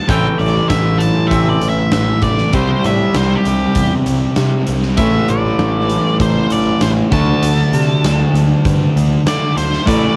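This home cassette recording sounds close and dry, with little reverb around most of the parts, and it plays as a cut from a longer piece of angsty, dark, quiet-loud alternative rock in a straight 4/4. An octave-fuzz lead guitar solos across the whole stretch, its dark, distorted melody carrying tape grit and analog delay. Beneath it, an overdriven semi-hollow guitar sits up front with a hollow-bodied riff, also coloured by cassette tape, while a very quiet, thick fuzz guitar plays its own riff underneath. A clean, twangy, scooped electric guitar picks soft arpeggios only until 2.5 seconds. A warm fuzz bass, picked and overdriven, and a huge arena drum kit with a pumping hall sound, punchy kick, medium-tuned snare and hi-hat drive the harmony from Am through C5 and A5 to D5 at 7.1 seconds.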